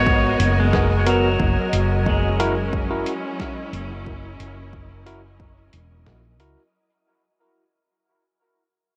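A meditative, spacious slice of ambient dub cut from a longer piece, moving at 90 BPM in a straight 4/4 and drifting from G#m9 to F#7 under a fade-out that runs its full 6.7 seconds. A rich, bowed studio string section holds sustained chords with vibrato and a soft attack, while a twangy pedal steel guitar, played with fingerpicks and volume swells, spins arpeggios through dub echo until 3.9 seconds. Down low, a dark, round hollow-body electric bass sits up front with tube saturation, joined by a punchy, layered electronic kick and a muffled, tape-tinged sampler-style kit of hi-hat and snare that carries its own dub echo. From 1.1 seconds a barky tine electric piano adds clean stabs through a combo amp from the background, also trailing dub echo. Above it all hangs an airy, breathy wind-like tuned noise texture with a slow attack and long release, set in light reverb and digital ambience.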